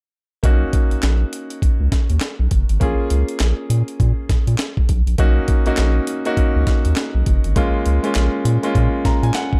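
R&B in a new jack swing style, this punchy, bouncy excerpt swings its sixteenths over a gritty, compressed sampler-style breakbeat kit of thumpy kick, high-tuned snare, hi-hat and handclaps, with a round, nasal analog bass up front and a clear, vintage-toned grand piano accompanying through Bmaj7 and Bbm7 before a piano fill at 8.8 seconds, all in a dark, dry production.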